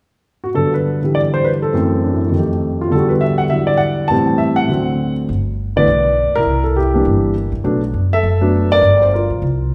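Swinging briskly at 203 BPM in 4/4 with a 60% lilt on the eighths, this relaxed, sophisticated jazz piano trio excerpt in G major opens with an intimate grand piano carrying the melody alone from 0.4 seconds, its action noise audible, through chords such as Gmaj7, F#m7b5 and Em9, before a woody, plucked upright bass joins at 5.3 seconds for the second section over G, C9, Bm7 and Gm7, both parts sitting up front in a reverberant recital hall.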